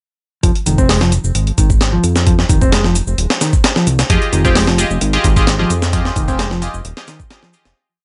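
The recording sounds dry and close, with a dulled top end that gives it a dusty, lo-fi edge. This is an energetic, raw breakbeat piece at 131 BPM in 4/4 with a straight feel, resting on an F minor ninth chord throughout. From 0.4 seconds, a gritty, compressed, pitched-up sampled break drives a looped groove with edits, anchored by a thumpy kick and a medium-tuned snare. Set in the background is an overdriven electronic shaker caught in a large room. Up front, a fat, detuned sawtooth bass plays a skipping, syncopated line, while a dark, fingered electric guitar with overdrive and dub echo repeats a 16-step sequence. At 4.1 seconds, a nasal, band-passed chord stab enters with close-voiced, dotted-rhythm chords, colored by a filter sweep, phaser and dub echo, just before the piece fades out from 5.3 seconds.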